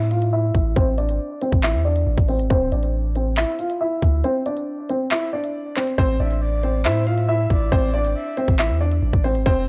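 A worn, woody, slightly detuned upright piano carries the melody from 0.0 seconds through a filter sweep and tape echo, over a deep, sine-toned 808 bass with a fast attack and long decay. This tense, ominous drill cut in A harmonic minor, tuned to A4 = 438 Hz, moves at 138 BPM in a half-time feel, with electronic drums built from a hard-clipped kick, crisp hi-hats and handclaps, and a break at 4.2 seconds. A soft, breathy flute-like synth lead with chorus, vibrato and tape echo enters at 6.2 seconds as a quiet second line, and the recording has a dry, gritty cassette-tape character.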